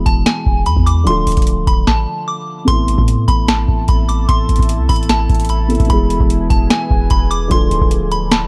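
A half-time trap groove drives this dark, brooding hip hop excerpt, with a booming analog drum machine sitting up front: a deep kick, crisp snare and metallic hats, all carrying a tape-tinged character. Underneath, an 808-style bass adds boomy, sine-based low end with a subtle noise layer, its notes striking quickly and then decaying. A delicate FM synth bell carries the melody high above, tinkling and bright, with a vintage warble shaped by chorus, phaser and tape echo. A dark concert grand piano accompanies in its middle and lower register, sounding mellow and somewhat boxy. After a brief stop from 1.9 to 2.7 seconds, the harmony shifts from E and Dm toward an Amadd9 chord, and at 3.4 seconds a moody ambient pad slowly fades in with detuned sawtooth unison, a sub octave, chorus and its own reverb. The production as a whole feels close and warm, with little reverb.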